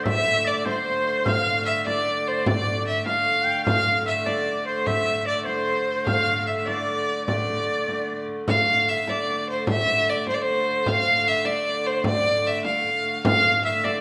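A medieval dance in D minor moves at 100 beats per minute in a straight 6/8, its mood ancient and mysterious, and this passage is cut from a longer piece. A single bowed fiddle carries the melody from start to finish, clear and focused with a light vibrato, sitting up front yet with a distant quality, moving between C5 and F5. Beneath it, a lone wheel-bowed hurdy-gurdy holds a drone between D3 and A3, biting, nasal and earthy with a smooth top. A bright shawm adds a folk-style second line with vibrato and scooped notes, dropping out at 8.2 seconds and returning at 13.3 seconds. A small frame drum, close and dry, is played with soft hands from 0.1 seconds, and the whole ensemble sits in a recital hall reverb with a 1.5-second decay.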